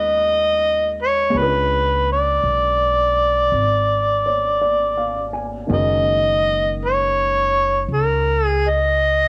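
A slow 4/4 swing at 55 BPM sets the pace for this smoky, intimate jazz ballad, a short cut from a longer piece lasting about 9.3 seconds. Up front, an amplified, overdriven harmonica carries the melody with a gritty edge, light vibrato, scooped notes and tongue slaps, playing in a soloing jazz style. Beneath it, a woody upright piano with short sustain provides accompaniment, sitting well back in the mix, while a pizzicato upright bass with steel strings adds a growly, thumpy low end. The harmony moves from G#m7 to C#7b9 at 1.3 seconds and settles on F#add9 at 5.7 seconds. Harmonica and piano both carry a cassette-tape coloring, and a moderate spring reverb lends the whole home recording a hazy, late-night room feel.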